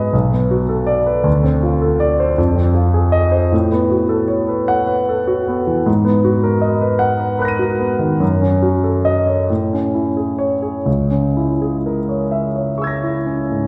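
Hazy and wistful, this excerpt from a longer impressionist solo piano piece drifts in a rubato 6/8 at roughly 40-54 BPM in dotted quarters, tuned to A4 = 442 Hz. A single grand piano with a warm, present tone and long sustain plays throughout the 13.7 seconds, spanning B1 to D#7 through colorful harmonies such as Bm7, Fm7, A69, G#m9 and Amaj7 before settling on C#m6. The piano sits up front, yet the recording places the listener further back in a wet concert hall whose 2.1-second reverb lingers around each chord.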